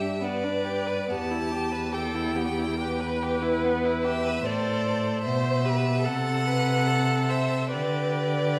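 Serene and tender, this slow romantic movement for string quartet moves at 66-75 BPM in 4/4 with a flexible rubato feel, its harmony passing from G through E minor and A minor before resting on G over D. Two focused, clear-toned violins carry the melody and a second line while the viola supplies accompaniment, each bowed with vibrato by a single player heard close, and a rich, smooth cello sits up front on the bass. A moderate concert hall reverb gives this 8.6-second passage, cut from a longer piece, a gentle sense of space.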